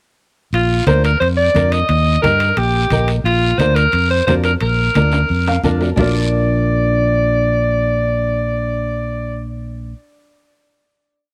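Danceable and festive, this short cumbia in Bb major moves at 176 BPM, with a bright, vintage-toned alto saxophone carrying a motif-based melody up front with light vibrato over a punchy fingered electric bass cumbia figure, dark, woody fingerpicked nylon-string guitar chords, a raspy, dry guiro, and low-tuned congas and ringing metal-shell timbales in the background; the percussion closes with a drum fill at 5.1 seconds before saxophone, bass and guitar hold a final chord from 6.0 seconds under light reverb.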